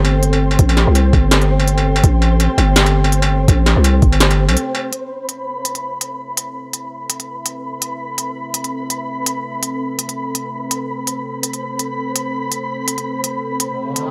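A half-time drum and bass groove at 166 BPM with a light swing on the sixteenths drives this tense, spacious A minor excerpt, where an overdriven industrial kit of clanging snare, crisp hats and struck metal sits up front over a dark, detuned, wave-folded analog pad with chorus and sidechain pumping, a flickering granular texture, a compressed, thumpy electronic kick that enters at 0.6 seconds and falls away at 4.1 seconds, and a growling, buzzy 808-style bass that drops out for a brief break at 4.6 seconds, after which a filter sweep moves across the pad and a short electronic riser lifts in at 13.8 seconds, all captured in a dry, gritty hardware sound.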